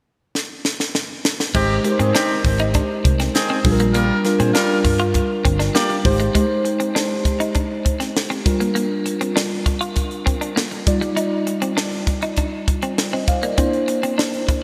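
Glossy and urban, this polished 1980s jazz-funk pop excerpt opens with a drum fill from a crisp fusion kit with a high-tuned snare, tight kick and gated reverb. At 1.5 s a mellow tine electric piano with analog chorus, a twangy, compressed clean guitar riff with lush chorus, a round, foam-muted fingered bass and a distant horn section with light vibrato all enter over Abmaj7 and Bb6 chords, with the horns and bass dropping out at 6.0 s and 6.3 s as the drums, keys and guitar carry on through Ebmaj9 and C9 in a bright digital hall-reverb sound.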